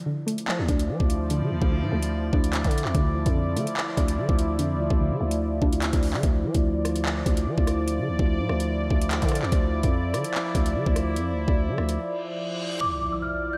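Soaked in dreamy hall reverb, this cold, tense half-time drill excerpt sets a soft, round chorused pluck, which drops out at 6.2 s, and a bright, detuned sweeping pad over an up-front electronic kit with a knocking kick, metallic hats, handclaps and rim clicks, plus a growling, buzzy 808-style bass, until the drums and bass break off at 12.0 s for a reverse cymbal and impact while a delicate, bell-like celesta enters at 12.8 s.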